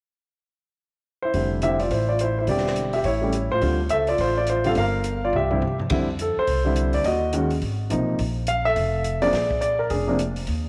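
A swinging 4/4 groove carries this warm jazz piano trio excerpt. An intimate, up-front grand piano takes the melody from 1.2 seconds with its action noise audible, and a woody pizzicato upright bass and a dark, smooth drum kit with a boomy kick and rolled-off top join at 1.3 seconds. A drum fill at 5.3 seconds leads into a passage where the harmony moves from Fmaj9 through Ebm7 and Abadd9, all set in a moderate echo chamber reverb.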